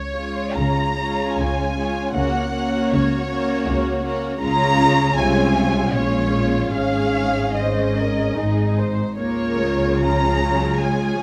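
A moderate recital-hall reverb surrounds this brief passage, cut from a longer piece, a slow romantic movement for string orchestra in Db major and 3/4, moving at 69-81 BPM with a lyrical, serene rubato feel. Up front, the first violins carry the melody from Db5 to Bb5 with a rich, expressive tone, soft attacks and vibrato. From 0.2 seconds, a lush second violin line sits close beneath them, smooth and even, while the violas fill in the accompaniment with a full, steady bowed sound. The cellos sit in the background, clear and focused but distant, sharing the bass role with the double basses, whose bowed tone is focused with a smooth top. The harmony moves gently from Db through Gb/Db, Bbm7 and Absus4 to Ab before settling back on Db at 9.2 seconds.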